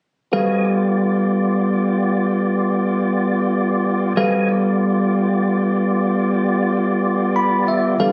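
Rollicking yet laid-back, this short blues excerpt rolls along at 63 BPM in a 12/8 metre with a straight feel, set in G mixolydian over a G7 chord. A bell-like tine electric piano carries the accompaniment up front, its bright, clean, direct tone ranging from G3 to B5. Beside it, a tonewheel organ holds sustained chords between B3 and Ab5. It is warm, fat and lightly overdriven, with key click, chorus vibrato and a slow rotary speaker, and also sits up front. Both parts play from 0.3 to 8.1 seconds, and the electric piano adds a fill from 7.0 to 8.0 seconds near the close. The sound carries a moderate club-style room reverb and compression, with the slightly informal character of a phone recording made in the room.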